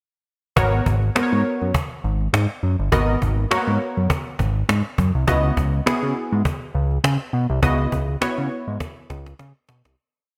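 Slick and danceable, this brief early-eighties boogie funk piece in G# minor moves at 102 BPM with a light sixteenth-note swing, as a fat, sawtooth-and-square analog bass plays a syncopated boogie line with muted ghost notes and chromatic approach notes under a punchy, detuned, ring-modulated polysynth comping push rhythms in drop2 voicings with grace notes and chorus, while a woody cajon keeps a mid-tempo boogie beat and closes with a fill from 8.8 seconds, all moving from G#m11 to C#m11 in a bright, digital-style mix with lush hall reverb that fades out from 7.6 seconds.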